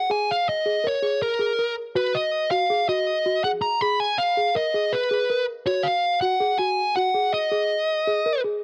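A dark, compressed fuzz lead guitar sits up front and carries the melody in this driving, tense progressive instrumental passage in 5/4, cut from a longer piece. Beneath it, a small celesta plays sweet, bell-like arpeggios with a delicate touch over shifting suspended and minor-colored chords. The close, dry small-room sound recalls a 1970s studio, and both parts play through nearly the whole 8.6-second fragment.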